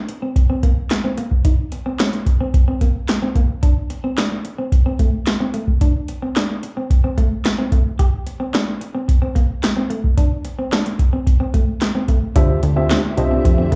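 Heard through a club PA with a touch of club reverb, this late-night, funky early-eighties boogie funk cut in D minor moves at 110 BPM as an overdriven analog drum machine with a deep kick, punchy snare, handclaps and metallic hi-hats drives a clean, slapback-echoed semi-hollow guitar riff, until at 12.4 seconds a plucky sawtooth bass, a mellow tine electric piano and a dark, bowed string section in the background arrive on a Dm11 chord.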